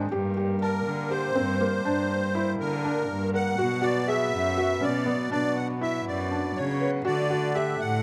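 Urgent and hypnotic, this excerpt of contemporary chamber music pulses in 7/8 at 242 BPM in eighths: a bowed cello with a gut-string, period-style tone carries the bass up front, a felt-muted upright piano spins soft, intimate arpeggios with audible action noise, a breathing pedal harmonium holds mellow chords in the background, and from 0.6 s a shimmering, dry musette accordion sings the melody close to the ear over Gm, Bm and D, all caught by close, detailed microphones in light reverb.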